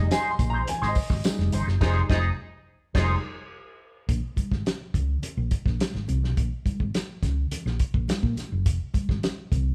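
Funk at 105 BPM in 4/4 with a straight feel, this cool, sly passage, cut from a longer piece, sits in Bb dorian, moving from Fm7 to Bbm7 and settling on Fm. A woody, polished upright piano plays stabs and takes a solo at the opening, alongside a dark, clean electric guitar picked through an envelope filter with wah; both stop at 3.2 seconds. Up front, a round, punchy hollow-body short-scale bass plays fingered lines throughout, joined by an acoustic soul drum kit with a tight kick, a medium-tuned snare, dark cymbals, a rolled-off top and a pumping room sound. Bright, thin-skinned congas sit very quiet in the mix, while a jingly tambourine stays in the background only until 1.7 seconds. A vintage horn section with light vibrato plays a tight second line from 1.8 seconds, as the band hits an accent. The group plays live together in one room, wrapped in a moderate large studio reverb.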